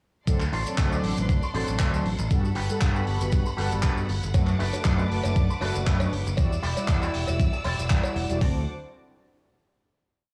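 Dry, gritty and tape-tinged, this short nu-disco piece sits in a small room with a touch of studio reverb, grooving in a feel-good D mixolydian at 118 BPM with a light swing on the sixteenths. A thumpy, sampler-style drum machine drives a four-on-the-floor kick and open hi-hat up front, while a damped, dry 70s kit adds a disco backbeat of handclaps, closed and open hats and shaker. A punchy, direct fingered electric bass jumps octaves in the low register, and a twangy, picked electric guitar through an envelope filter plays compressed funk chord rhythms in close voicing, bathed in lush chorus and analog delay. Mellow, round synth brass with a detuned sawtooth edge, ring modulation and a filter sweep adds dotted-rhythm chords in drop2 voicing with chorus, delay and vibrato, as a distant, bowed string section holds a sustained pad that pumps with sidechain. Over the D7, Gmaj9, Bm7/F# and Em9 progression, a cowbell joins in the background at 4.3 s as the Bm7/F# arrives, before the piece settles on a final D7 chord at 8.4 s.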